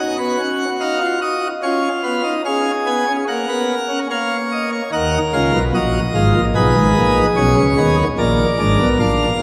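A solo pipe organ on a full plenum sounds from the first moment, its brilliant mixtures and crisp chiff placed up front in a solemn, serious baroque-style four-part fugue. The opening passage moves through B, C#7 and F#/A# before settling into minor-key harmony at 4.9 seconds, passing through Ebm and Abm to a closing Bb7. A long, wet church reverb surrounds the organ throughout this short fragment of a longer piece.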